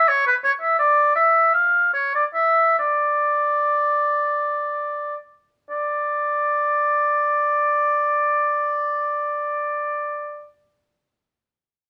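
This classical, baroque-style fantasia for unaccompanied oboe, cut from a longer piece, moves in a grave, solemn D minor with a free rubato feel in 3/4, drifting between 56 and 85 BPM and slowing through its first 5.7 seconds before a new section begins. The solo oboe plays from the start until 10.5 seconds within a span from B4 to F5, its clear tone placed up front with a soft attack and a roomy quality. Light reverb surrounds the performance, which is tuned to A4 = 441 Hz.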